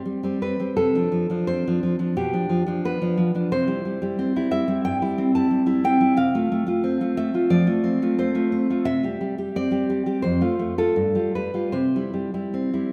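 A spacious concert hall reverb, lingering for about 2.6 seconds, surrounds a single nylon-string guitar placed up front in this romantic solo classical piece, a short passage taken from a longer work. The fingerpicked guitar has a full-bodied, deep tone with the fresh-string sound of new strings, spanning F2 to A5, and the mood feels warm and nostalgic. In C major and 4/4, the tempo moves freely between 74 and 91 BPM with an expressive rubato feel. The harmony opens on a C5 voicing, passes through Dm7/C and G7/B, and settles on C at 3.5 seconds before drifting to F/C and back home. A closing turn through F and G7 resolves to C at 11.7 seconds, rounding off the phrase just before the passage ends at 12.9 seconds.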